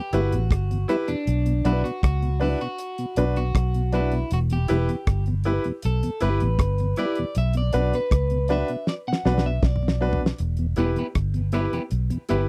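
A clean, lightly broken-up electric guitar solo leads this hypnotic, laid-back roots reggae excerpt from 0.0 to 10.4 seconds, while a foam-muted, round fingered bass and a damped 70s drum kit with a fat snare and tight kick sit up front. A bright, polished grand piano adds stabs, and a mellow tonewheel organ with key click and slow rotary speaker fills in beneath the Em and Bm chords. A drum fill at 8.9 seconds leads into a new section at 10.4 seconds, all captured in a dry, close 1970s-style studio sound.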